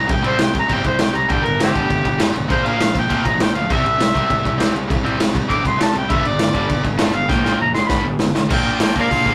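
A driving straight 4/4 at 200 BPM powers this rowdy, upbeat punk rock cut in C major, with a raw garage drum kit up front from 0.1 seconds, its punchy kick, medium-tuned snare, hi-hat and crash sounding gritty and saturated in a small, pumping room, and a drum fill arriving at 7.3 seconds. An amplified, overdriven harmonica takes the solo from the start, warm with light vibrato and tongue slaps, over a tight, bright, double-tracked distorted guitar riff and a growly fuzz-toned electric bass sitting in the background. The rough rehearsal-room sound carries tube saturation and light reverb, and the clip is cut from a longer piece.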